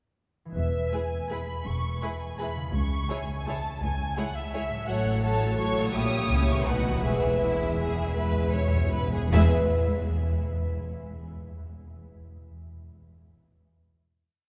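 Elegant and sweeping, this brief classical orchestral ballroom waltz in E major sways in rubato 3/4 at 150-181 BPM, as a concert harp's ringing rolled chords open at 0.5 s beneath a dark, distant violin section singing the melody with expressive vibrato, a rich second violin section and smooth viola section adding after-beat and sustained chords, a warm cello section in the background and an even double bass section doubling the bass line, while round soft-mallet timpani strike single notes on E2 and return with a fill from 7.0 s, all bathed in a wet cathedral reverb before the piece settles on its final chord at 9.3 s.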